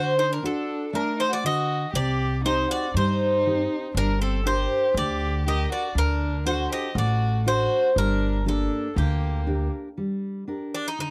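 A dry, close studio sound in a 1970s style, touched with light reverb, frames this dramatic, intense Greek folk passage in G harmonic minor, moving at 120 BPM in a straight 4/4 through chords of D, Cm and Gm. Up front, a bright, metallic bouzouki carries the melody on picked double strings with some octave-doubled courses, while a single bowed violin adds an expressive second line with vibrato and portamento until 9.7 seconds. A full-bodied, fingerpicked jumbo acoustic guitar supplies a dark accompaniment throughout, and a woody pizzicato upright bass sits prominently from 1.9 seconds, with the cut ending on a brief new section from 10.0 seconds.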